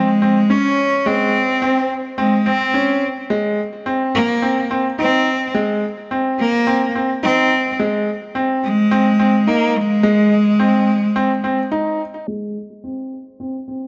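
A bowed cello with a rich, focused tone and vibrato carries the melody from the start, up front beside an intimate, clear baby grand piano whose riff shows audible action noise through a low-pass filter and delay. This tender, hopeful electronica excerpt moves at 107 BPM in a straight 4/4, shifting from Dbmaj7(no3) to Ab inside a moderate echo-chamber reverb. The cello stops at 11.7 seconds, and from 12.3 seconds the harmony falls away as a filter sweep passes over the piano until it ends at 13.8 seconds.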